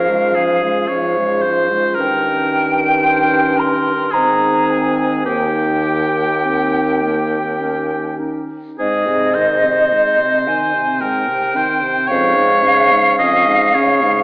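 Moving freely in a rubato 3/4 at around 50-57 BPM, this slow romantic movement for wind quintet unfolds in Ab major with a serene, warm mood. A hollow, silvery concert flute carries the melody high above, its crisp attack and vibrato sounding slightly distant, while a clear oboe sits up front with a second line beneath it. A punchy yet smooth-topped French horn and a warm clarinet, tucked into the background, fill out the accompaniment. A mellow, roomy bassoon anchors the bass before dropping out at 13.0 s, leaving the other four to finish the fragment at 14.2 s. The harmony drifts from Db/Ab through Eb7/G to Ab and Eb, and the whole ensemble is heard from further back in a wet concert hall with an AM-radio colour.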